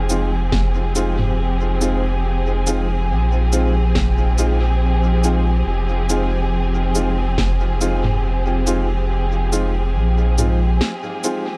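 Ambient dub at 70 BPM in F minor with a light 16th-note swing, deep and meditative, resting on a single Fm7 chord in this short excerpt cut from a longer piece. Veiled, con sordino strings bowed with vibrato hold lush sustained chords over a round, up-front sine sub bass, while boxy upright piano stabs and a kit of cabasa, woody snare and toms trail dub echo, with an analog kick sitting in the background from 0.5 to 7.6 seconds. The sound is dry, and the bass drops out at 10.8 seconds for a brief break carried by strings, piano and percussion.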